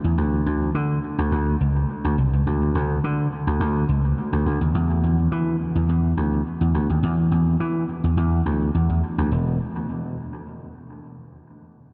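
A straight 4/4 pulse at 105 BPM drives this funky, danceable piece, cut from a longer funk track. A vintage electric slap bass carries it entirely on its own, sitting up front from the start until 9.6 seconds and ranging from E1 to E3. Its tone is punchy and amped, with an analog delay adding echoes. The whole mix is soaked in a cathedral reverb with a 6.1-second decay, giving a dreamy, cavernous sound whose top end is rolled off above 7.6 kHz. The music shifts into a new section at 9.3 seconds, and the piece runs to 11.6 seconds.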